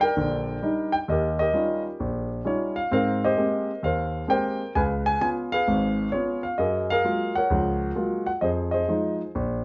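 A moderate club reverb of about 0.8 seconds gives the recording a natural room sound, and the top end is rounded off, so the tone stays soft and unbrittle. This is a brief slice of solo jazz piano in Eb major, swinging at 131 BPM in 4/4 with a playful, warm mood. The concert grand sits up front, with deep bass and a short sustain, ranging from Ab1 up to Ab5 across the whole 9.6 seconds. The harmony moves from Ebmaj7 and Eb9 through Abmaj9 and Db7 to a colorful Gbmaj9 before settling on Fm7 near 8.4 seconds. Tuned slightly sharp to A4 = 445 Hz, the piano keeps a warm, mellow character, and the passage is cut from a longer piece.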